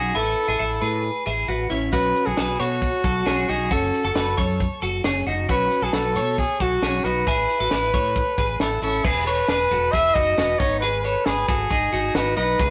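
Jangly indie pop at 135 BPM in B mixolydian, bright and breezy, with a clear, smooth-topped trumpet singing the melody with vibrato over bright, twangy twelve-string electric guitar arpeggios and a round, dark fretless bass, moving through chords like Asus2, Bsus2 and F#m before shifting to Eadd9 and G#m at 9.0 seconds. A compact cocktail drum kit with a punchy kick, high-tuned snare and dark cymbals enters at 1.9 seconds. The rough rehearsal-room recording carries warm saturation and a moderate stone-room reverb, and the passage is cut from a longer piece.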